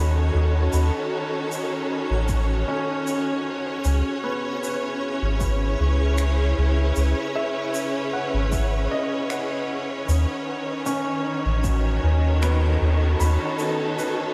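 Lush bowed symphonic strings hold sustained chords up front in this hazy, spacious ambient dub excerpt at 77 BPM, over a round, deep sub bass and muted felt piano arpeggios fed through analog delay, while a very quiet reversed granular swell, airy shaker and finger snaps with dub echo, and an overdriven electronic kick from 2.3 s sit in a dreamy mix soaked in long reverb.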